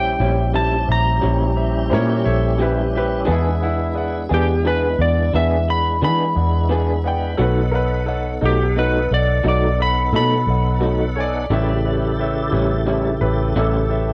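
Slow blues in 12/8 at 58 BPM with a laid-back, swaggering feel, where an up-front, slightly broken-up slide guitar carries the melody over a dark, foam-muted electric bass, a lo-fi, compressed guitar with tremolo through a small old amp, a lightly overdriven tonewheel organ with slow rotary speaker and chorus vibrato, a concert grand piano with audible action noise, and a clear, woody upright piano joining at 1.9 seconds, all captured in a dry, close 1970s-style studio sound.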